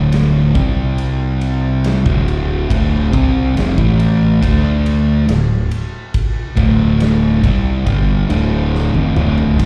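A slow, straight 4/4 pulse at 70 BPM drives this hypnotic, brooding stoner and doom metal excerpt in D minor, where a double-tracked, compressed fuzz guitar riff sits up front over a growling, overdriven fingered bass and a big acoustic rock kit with a punchy kick, medium-tuned snare, crash, ride and toms that closes with a drum fill at 8.7 seconds, all heard as a live gig through a club PA with light reverb.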